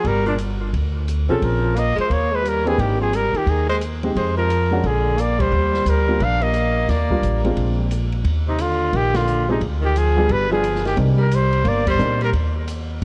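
A brisk, swung 4/4 groove from a woody, growly pizzicato upright bass and a dark, softly rolled-off drum kit drives this sophisticated, playful snippet of small-group swing and bop, with the bass sitting up front and the drums low in the mix. A clear trumpet with light vibrato carries the melody over a punchy, close-miked tenor saxophone's forceful second line, and an intimate baby grand piano with audible action noise joins at 1.3 s to comp, all three touched by analog delay. The band hits accents at 5.3 s and 11.8 s, and a springy, echo-heavy cassette sound gives the whole a vintage tint.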